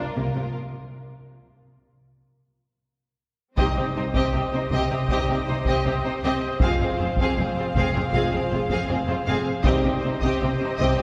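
Heavy-stick taiko drums, close and dry, arrive at 3.6 seconds after a brief fill and drive this dark, epic orchestral film-score fragment, joined by a mellow, very quiet French horn section and a distant string section holding sustained chords. Bowed symphonic strings play from the start: a rich, lightly vibrato, distant violin melody floats above a warm second violin line, lush violas, focused cellos and a clear double bass section, the supporting parts all set in the background. A very quiet timpani with hard mallets strikes at 9.7 seconds, and a wet concert-hall reverb with a long tail surrounds the ensemble.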